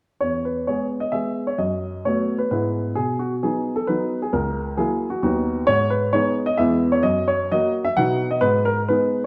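Graceful and cheerful, this short passage cut from a longer classical-period piano sonatina moves in a lilting triple metre with a flexible, rubato feel. A baby grand piano plays alone from 0.2 to 9.2 seconds, its natural, warm tone placed up front and spanning from C#2 up to F#5. The harmony moves from E through B7/F# and E/G# toward B. It then passes through F#7/C#, B/D#, G#m, E and F# before settling on B and G#m near the close. A moderate recital hall reverb gives the instrument a sense of space, while the dark, warm production keeps the sound mellow. The tuning sits slightly high, at A4 = 444 Hz.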